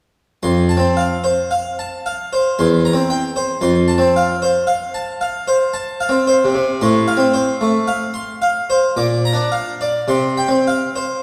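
A solo harpsichord opens at 0.4 seconds with a brilliant, plucked Flemish-style tone, its three sets of strings giving a full sound that spans from the low bass to the upper treble. This radiant, dance-like baroque-style suite movement moves in triple metre with a free, rubato feel, passing through harmonies that settle on a suspended chord near 10.1 seconds. The instrument sits close and up front, framed by a long concert-hall reverb, and the fragment ends at 11.2 seconds as a cut from a longer piece.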